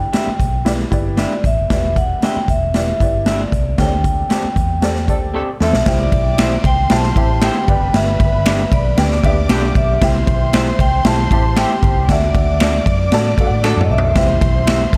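A ringing, metallic vibraphone melody opens this danceable 1960s-style soul piece over a worn, slightly detuned upright piano, a dark, foam-muted fingered electric bass, lo-fi, slightly broken-up guitar stabs and a punchy, up-front big-band drum kit, with a band accent and drum fill leading into a fuller passage as a mellow horn section joins at 4.8 seconds, veiled con sordino strings at 5.9 seconds and background finger snaps at 6.4 seconds, set in light reverb.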